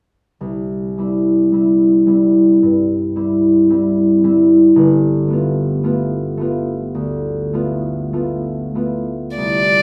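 A resonant recital hall gives this serene, lyrical classical excerpt a generous, lingering bloom, with a romantic duo of violin and concert harp moving freely at a slow 48-56 BPM in C major. The up-front harp carries the accompaniment from 0.4 seconds, its warm, ringing, thumb-plucked tones spanning a low-to-middle range as the harmony shifts from C to G9. Only at 9.4 seconds does the violin enter on a single high D, its rich, expressive bowed tone colored by vibrato and portamento.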